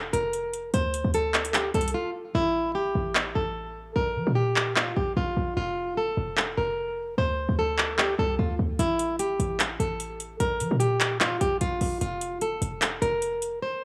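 A half-time trap groove at 149 BPM drives this melancholic, eerie hip hop excerpt, with an overdriven trap kit of metallic hats and handclaps sitting up front, a brief break at 1.9 s, and the hi-hats muted from 2.3 to 8.8 s. Underneath, a punchy, tight 808-style bass with a sine body, noise layer, fast attack and decaying envelope supports a fingerpicked flamenco guitar melody, acoustic and up front, trailing tape echo over a cycling D5, A5, Bb5 and F progression. The gritty, dry sound carries cassette and transformer saturation, with light reverb and small-room ambience.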